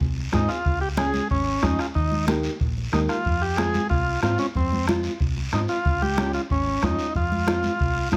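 Opening on a dark, round hollow-body electric bass with a soft-beatered bombo and raspy guiro, this driving, passionate cumbia excerpt soon adds soft-handed congas in the background, then a buzzy vintage combo organ with light vibrato carrying the melody up front over a small, thumb-plucked nylon-string guitar, all moving through an F minor progression in a lightly reverberant room.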